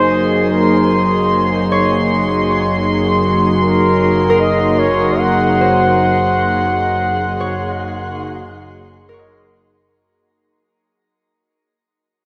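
This weightless ambient piece in Gb lydian opens at 0.0 s, in free time, with several layers sounding together. A nostalgic, lo-fi pad sits up front, its detuned sawtooth and triangle tones warbling through chorus and holding long, slow-blooming chords. Beneath it, a tense, string-like drone with a noise layer, ring modulation and vibrato sustains in its own reverb, while a muted double bass section, dark and veiled, bowed con sordino with light vibrato, fades in on a low Gb. A solo flugelhorn carries a warm, smooth-topped melody in classical style, trailed by diffuse ambient delay. At 1.7 s a fingerpicked concert harp joins in the background with ringing acoustic arpeggios that drift through the same delay, and the music fades out from 5.7 s as this section draws to a close around 9.9 s, all of it washed in a long, wet shimmer reverb.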